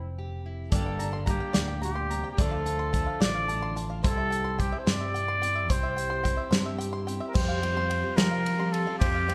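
Lightly reverberant and marked by lossy compression artefacts, this warm, anthemic indie folk in 6/8 opens with a mellow, vintage-toned trumpet carrying the melody up front, over a round, punchy electric bass and a dark, fingerpicked steel-string acoustic guitar that drops out at 4.0 seconds. From 0.7 seconds a loose, small-room drum kit with a tight kick and rolled-off top joins up front, alongside a shimmering, octave-doubled twelve-string guitar in the background and a twangy, percussive bluegrass banjo playing high arpeggios. At 7.3 seconds a distant, roomy brass ensemble with light vibrato adds sustained chords in the background as the arrangement builds.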